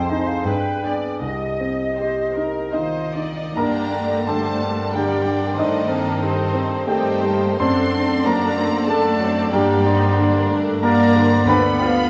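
A classical, Romantic movement for piano and orchestra in 3/4, this brooding, passionate passage moves with a rubato pulse between 68 and 96 BPM, opening in C minor before turning to G minor at 3.6 s. An up-front, natural-sounding baby grand piano carries the melody across a broad range, joined by a lush, focused violin section with vibrato, while a second violin section, soft in attack, sings a background line alongside an airy silver flute. A smooth, distant viola section fills the accompaniment, a dark French horn section holds sustained chords, and a very quiet, expressive cello section anchors the bass. At 3.6 s a woody double bass section, a vintage-toned solo clarinet and a roomy, very quiet bassoon enter, and a mellow cor anglais adds a further line from 4.3 s. The ensemble sits on a scoring stage with generous reverb, and the tuning rests slightly high at A4 = 444 Hz in this fragment cut from a longer piece.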